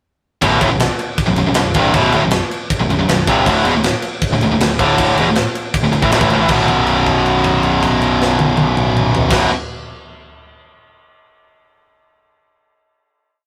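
A straight 4/4 pulse at 158 BPM drives this short, complete heavy metal piece in B minor, its mood epic and dark. The tight metal drum kit sits up front with a big rock groove, its tight kick, medium-tuned snare, toms and bright crash cymbal ringing in a big acoustic room. Two electric guitars play a power-chord riff together from 0.4 seconds: one overdriven and forward in the mix, the other a high-gain, distorted part set further back. Beneath them, a growling, round electric bass with overdrive drives eighth notes that double the guitar riff. The riff moves from B minor to D5, and at 6.5 seconds everything lands on a B5 final chord, its note held until 9.3 seconds. Light reverb and a rough rehearsal-room quality give the recording a raw, live feel.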